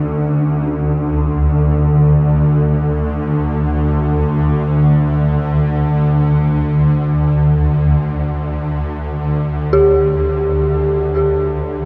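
A swarming, granular drone sits up front from D2 to D3, anchoring a Dsus4 beneath a dark detuned synth bell whose eerie, inharmonic FM arpeggios between C#4 and G4 trail through chorus and diffuse ambient delay, all in free time across this dark, ominous 11.9-second ambient excerpt tuned to A4 = 445 Hz and soaked in a cathedral reverb with a 6.5-second tail.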